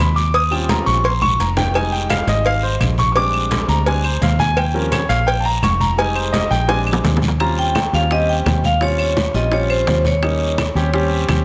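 Sophisticated and danceable, this Afro-Cuban jazz excerpt at 170 BPM in Eb mixolydian opens with an intimate, polished concert grand piano soloing up front over a foam-muted fingered electric bass, raspy guiro, thick-skinned congas in the background, hard-hand cowbell and bongos, and woody claves, all moving through Eb13, Fm7 and Bb13 changes, before a ringing vibraphone with slow motor vibrato takes the melody at 7.4 seconds as the harmony returns to Eb13.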